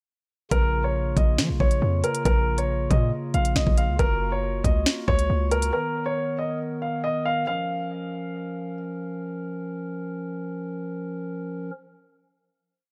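From 0.5 s, a short, ominous drill piece at 138 BPM in half-time opens with crisp, skipping hats, fast hi-hat rolls, a knocking kick and a sharp snare with 12-bit sampler grit, over heavy 808 sub-bass notes that follow the kick and bend with pitch slides. Up front, a concert grand with deep bass repeats a looping, tape-echoed melody like a sampled loop, while a hollow, mellow stopped-flute pipe organ holds soft, baroque-voiced chords through a tense Bb minor to Gbmaj7 and Bmaj7 progression. The drums and 808 drop out at 5.7 s, the piano ends at 8.7 s, and the organ alone sustains the final Bb minor chord until 11.7 s in a small room ambience.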